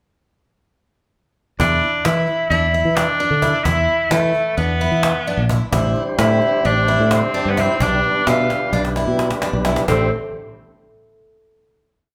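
A bright, up-front tenor saxophone opens this tense progressive piece at 1.6 seconds, stating a motif-based melody in arching phrases with vibrato and scooped notes, in a vintage pop style. It arrives together with a shimmering, octave-doubled twelve-string acoustic guitar picking an arpeggiated ostinato, a growly, direct fingered electric bass driving a syncopated riff, and a woody cajon with faint snares holding a 9/8 groove. At 5.7 seconds a smooth tonewheel organ joins them with held quartal chords through a slow rotary speaker. The cajon plays a fill from 8.5 seconds, and the band settles on a final chord at 9.9 seconds. Played live in one large studio with moderate reverb, the whole piece feels driving and restless in its uneven meter.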